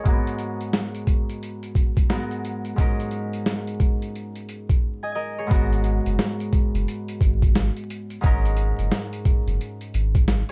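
Up-front, gritty, pitched-down sampler drums with a thumpy kick and a medium-tuned snare drive this reflective, dark boom-bap hip-hop excerpt at 88 BPM in G# minor with a swung 16th feel, over a bright, ringing fingerpicked concert harp that carries a cassette-tape tint and a filter sweep through the first 5.5 seconds, as it moves between G#m7 and D#7sus4/G#, until a deep, round, mellow dub sub bass enters at 5.5 seconds, all within a dry, dark production dusted with vinyl crackle.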